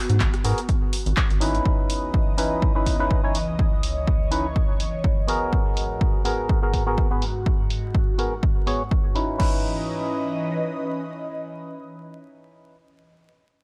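An airy, breathy pad with chorus and phaser opens this moody deep house excerpt at 124 BPM in C# minor with a 16th-note swing, pumping against a punchy, up-front electronic kick and a tape-warm analog drum machine of crash, handclaps, hi-hat and rim click under a filter sweep, while a rubbery square bass bounces briefly until 1.6 seconds and a nasal, hollow organ stab with tape echo punches over G#m9 and C#m9 chords until the drums drop out at 9.5 seconds, leaving pad and stab over light reverb and vinyl crackle.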